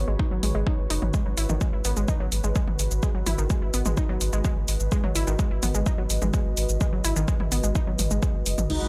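A driving 127 BPM pulse in straight 4/4 anchors this cinematic melodic techno excerpt, with an overdriven, up-front electronic kick entering at 0.2 seconds, joined at 0.4 seconds by a punchy analog drum machine supplying crash cymbal, hi-hat, shaker and toms, its overdriven hits pumping against the sidechain. Beneath them, a round analog bass built from triangle and sine tones sits deep and dark with tube saturation and a filter sweep, while a detuned, wave-folded unison pluck spins arpeggios through analog delay, its short decay adding a warbling vintage edge. A moody ambient pad with a sub octave, ring modulation, chorus and its own reverb hangs behind everything as a dusky texture, breathing with the sidechain. The harmony moves from G#m7 to C#7(no3)/G#, and at 8.7 seconds an impact arrives as a mellow supersaw melody, a thick, bright, chorused pad with 12-bit sampler grit, and a background sub drop all appear together. 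The mix is dry and gritty, with hardware and transformer saturation giving it a raw, tactile weight.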